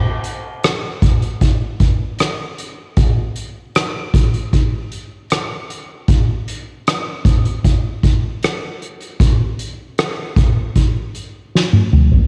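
A home cassette recording with light reverb and a tape-colored sound carries this brief pop excerpt at 77 BPM in a straight 4/4, its mood longing and melancholic. The only part is an acoustic drum kit played with soft mallets, placed up front in a big room, with a fat snare, a boomy kick, hi-hat, rim clicks and toms. It begins at 0.2 seconds and closes with a drum fill from 11.5 to 12.3 seconds.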